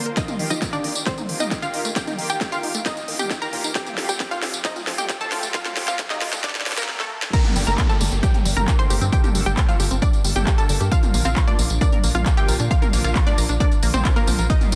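Emotional and euphoric, this cut from a longer uplifting trance track moves at 134 BPM in 4/4 in G minor, opening with a build-up in which a filter sweep works across the tight, evolving sawtooth arpeggio synth while a drum fill runs beneath it. A lush, detuned unison pluck carries the melody with a punchy, fast-attack bite, shaped by sidechain pumping and trailed by delay, and a thick, airy pad with a noise layer and chorus holds sustained chords behind it, moving from Ebadd9 to Fadd9. The punchy analog kick sits up front, joined by a layered, tape-warm techno kit with a cracking snare, smooth hats, claps, tambourine, ride, crash and toms, which carries a small-room character, while a very quiet riser and downlifter add subtle motion. The drop lands at 7.3 seconds on Gmadd9 before moving to Bb, and at 7.6 seconds a driving sawtooth and square-wave sequencer bass enters with tube saturation and sidechain pumping. 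The mix has light reverb and a dense, heavily limited modern master.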